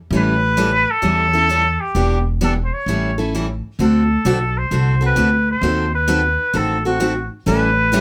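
A trumpet with a straight mute carries the melody in this lively, swinging excerpt of acoustic string swing in the jazz manouche style, its nasal, breathy tone colored by light vibrato and scooped notes, sitting up front yet with a roomy, distant quality. Underneath, a picked steel-string acoustic guitar supplies bright accompaniment from the start, while a pizzicato upright bass with gut strings gives a woody, thumpy low end. The tune moves at 130 BPM in 4/4 with a swung eighth-note feel, passing through A7, Em7, D7 and a D#dim7 before returning to A7. At 7.5 seconds a second picked steel-string guitar joins, its finger squeak audible in the closing moments. Close, detailed microphones and light reverb keep the small group intimate and present.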